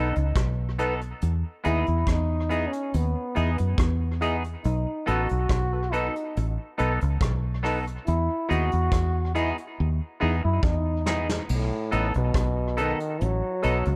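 A straight 4/4 roots reggae groove at 70 BPM in E major rests on a round, punchy fingered electric bass up front and a soft brush drum kit with dark cymbals and a tight kick, which plays a fill from 9.8 to 11.5 seconds. Over it a mellow, distant trombone takes a solo with vibrato and tape echo until 11.5 seconds, while a bright, clean semi-hollow electric guitar with subtle chorus and tape echo, and a hollow, percussive organ stab sitting in the background, fill out the accompaniment. The mood is sunny, the harmony moves between B7 and Emaj7, and a light reverb surrounds this short cut from a longer piece.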